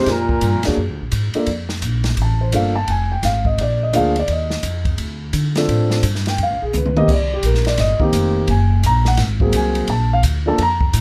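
A lightly swung 4/4 groove carries this relaxed, sophisticated small-group jazz excerpt, where a mellow, subtone baritone saxophone with plate reverb and a vintage-toned trumpet with scooped notes sound only until 0.8 seconds, leaving an up-front grand piano with deep bass and long sustain, a woody, growly pizzicato upright bass and an airy kit with dark cymbals and a boomy kick, which plays a fill at 6.7 seconds, to carry on in light reverb.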